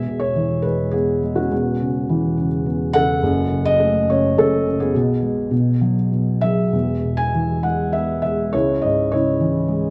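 Rubato and uneven in 3/4 at about 103 BPM, this brooding, cool lyrical classical excerpt sets a solo felt-muted upright piano, intimate, mellow and thick with felt, up front in a moderate recital-hall reverb, its harmony moving from E through A over E, F#m and G#m over B back to E before reaching C#m at 8.5 seconds, all in a dark production tuned to A4 = 438 Hz.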